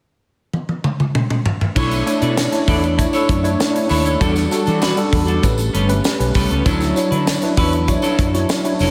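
Polished 1980s jazz-funk pop with an urban, slick mood, where a tight funk drum kit with a high-tuned snare opens with a fill at 0.5 seconds before a worn, lightly overdriven tine electric piano with analog chorus and slapback echo, a dark, picked clean electric guitar riff, a growly fretless bass with lush chorus and a distant, jingly tambourine all enter at 1.8 seconds over Bm11, Em11, A9 and Dmaj9 chords in a big arena sound with lush hall reverb, cut from a longer piece.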